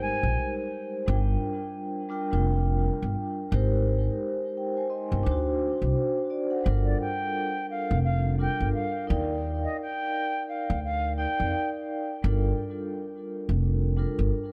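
This tough, gritty boom-bap hip-hop excerpt opens at once on woody, thumpy pizzicato upright bass, ringing soft-mallet vibraphone and a brief touch of concert flute, all sitting up front at a swung 86 BPM in 4/4. The vibraphone carries the accompaniment throughout: metallic yet mellow and airy, with a slow motor vibrato, filtered and dressed in tape echo and a cassette-tape tint. The chords begin in G phrygian, moving through Abmaj7, Gm7 and D7. At 6.7 seconds the harmony settles into G minor, with Gm7 and Ebmaj9. The flute returns at 6.8 seconds for its melody, pure and expressive with a soft attack, also filtered and trailed by tape echo. The echo-heavy mix sits in a small room with light reverb, and the bass holds underneath until around 14.3 seconds.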